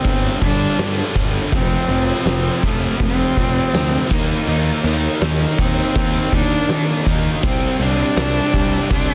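An oversized, low-tuned drum kit sits up front in this brooding, angsty alternative rock excerpt, its boomy kick, fat snare and dark crash cymbals saturated and gritty inside a pumping stone room. At a straight 81 BPM in 4/4, a bowed cello sings a rich, focused melody with vibrato and a smooth top over a round, punchy fuzz bass that is direct and amped. Two picked guitars, one compressed and distorted, the other a thick, bright fuzz, churn a background riff through G5, F5, Eb5 and C5, all glued together by studio reverb and a dense, heavily limited master.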